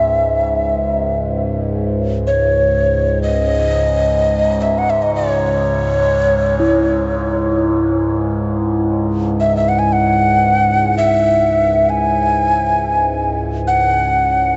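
A mellow, hollow cedar flute in the Native American style opens over an overtone-sweeping drone, its airy tone, crisp chiff and vibrato floating up front in a diffuse ambient delay while the resonant drone sustains low alongside it, equally up front, with slowly moving overtones and a chorused shimmer. At 6.6 s a bronze singing bowl enters in the background, its metallic ring carrying a slow beating that deepens the meditative, haunting mood of this free-time world meditation piece in C# minor. The production is dark and warm, bathed in a huge, wet reverb that lets every tone hang in the air.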